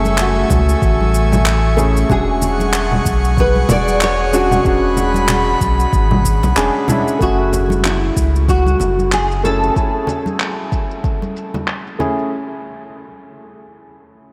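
A fingerpicked nylon-string guitar carries the melody with a full-bodied, deep classical tone and a touch of finger squeak through this wistful, warm sunset chillout excerpt in F# minor at 94 BPM with a swung sixteenth feel, joined by a dark, worn grand piano with audible action noise and tape echo, an airy, breathy detuned pad that sustains until 7.2 seconds, a round sine sub bass up front, ringing acoustic congas in the background, an overdriven electronic layer of shaker, handclaps and congas, and a deep overdriven electronic kick that drops out from 6.6 to 7.2 seconds before filter sweeps on the drums and piano begin, the whole mix soaked in a dreamy cathedral reverb.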